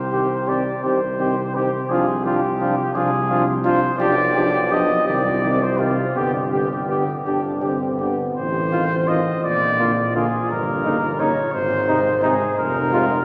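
A mellow trumpet carries the melody up front, its soft attack and light vibrato sounding distant and roomy in this heroic, solemn classical brass quintet excerpt in C minor, a 6/8 passage taken freely at around 56 BPM. Beneath it a present tuba anchors the bass while a warm flugelhorn sings a second line, a French horn with gentle vibrato sits in the background, and a close-miked trombone adds very quiet accompaniment. A wet cathedral reverb with a 6.9-second decay bathes the ensemble as the harmony moves from C minor through G toward F minor by 12.6 seconds.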